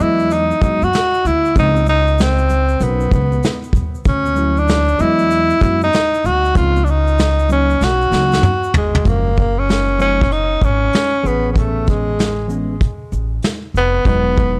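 A swung 96 BPM groove in 4/4 carries this cool jazz-hop excerpt, with a vintage brush drum kit of dark, smooth character laying down hi-hat, tight kick, medium-tuned snare, shaker and toms, capped by a drum fill from 7.8 to 9.1 seconds. Underneath, a woody, thumpy upright bass plucks pizzicato on steel strings in a low register, while a worn, slightly out-of-tune tine electric piano with light overdrive plays lush major-ninth chords through its built-in speakers. Up front, a breathy tenor saxophone takes the solo melody in a jazz style, with vibrato, scooped notes and a touch of analog delay on its smooth top. Bright tube shaker and congas sit in the background until 9.1 seconds, where the harmony shifts toward F#maj9 and Amaj9 before returning to Emaj9. The excerpt has a gritty, dry, hardware-recorded sound with transformer saturation, cassette tape character and a small room reverb, giving it a cool, warm mood.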